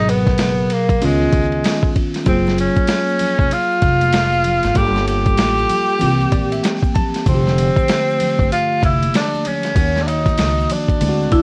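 Jazz-hop with a smooth, relaxed swing at 96 BPM, cut from a longer piece, where a breathy, subtoned tenor saxophone carries the melody over bell-like tine electric piano chords with lush chorus (including a fill from 6.0 to 7.3 seconds), woody pizzicato upright bass, a gritty, thumpy sampler-style drum kit, very quiet egg shaker and congas entering at 2.3 seconds, and a ringing vibraphone note arriving at 11.3 seconds, all wrapped in a small room and the warble and crackle of worn cassette tape and vinyl.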